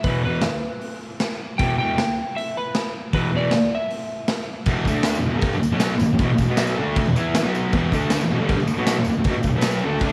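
Gritty and raw, this garage rock excerpt drives in straight 4/4 with a thick, double-tracked fuzz guitar riff up front and a punchy, saturated drum kit of kick, medium-tuned snare, hi-hat and crash cymbal, its bright stone-room sound pumping and rolled-off on top. A dark, slightly broken-up slide guitar, played with fingerpicks, carries the melody until 4.5 seconds. At 4.7 seconds a jingly, close and dry tambourine enters in the background as the section shifts, all set in a moderate echo-chamber reverb with small-room ambience.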